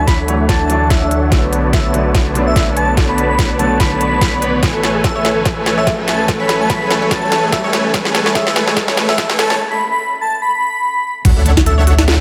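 Future bass at 145 BPM in A major, euphoric and playful with a swung half-time feel, this excerpt is one long build-up: huge, detuned supersaw chords drive the riff under a filter sweep, while a deep, saturated sub bass and a soft, dreamy sine lead with chorus and tape echo pump with sidechain. A clear, intimate baby grand with audible action noise and 12-bit sampler grit sits briefly in the background, a mellow, ethereal pad sustains beneath, and from 4.6 seconds a punchy, very quiet unison pluck adds ring-modulated arpeggios as the chords move from Dmaj7 through Bm7 to Amaj7. A knocking electronic kick and an up-front trap kit with sharp snare, crisp hats and crash cymbal play a drum fill until a break at 9.6 seconds, and a faint riser lands on an impact at 11.2 seconds, the whole mix set in a lush hall reverb.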